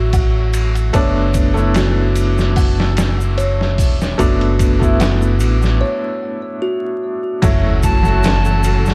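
A small-room ambience with vinyl crackle frames this dark, melancholic trip hop excerpt at 74 BPM, built on a gritty, pitched-down sampler-style drum kit with a thumpy kick, a round, up-front fingered electric bass, a soft felt-muted upright piano with audible action noise, tremolo and tape echo, and a delicate, slightly out-of-tune music box playing arpeggios through delay, while a ringing tube shaker sits far back. After a break from 5.8 seconds, an impact arrives at 7.4 seconds as lush, bowed symphonic strings enter, a very quiet electronic sub drop follows at 7.5 seconds, and at 7.8 seconds a bright, reedy silver concert flute with vibrato and 12-bit sampler grit takes up the melody.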